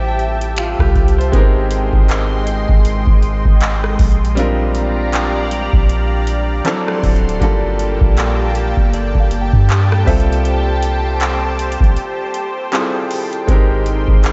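Contemporary R&B with a sensual, longing mood and a lightly swung sixteenth-note feel, moving through rich chords such as Fmaj9, Abmaj7 and Gm9. A clear grand piano plays accompaniment over a lush, detuned sawtooth pad with chorus, phaser and sidechain pumping. An up-front round 808-style bass and a booming analog drum machine, entering at 0.2 s with a deep kick, metallic hats, finger snaps, handclaps and rim clicks, anchor the groove, while a very quiet FM synth bell adds a pure glint; the dreamy, reverb-soaked mix has a hazy top, and a break arrives at 12.0 s in this fragment of a longer piece.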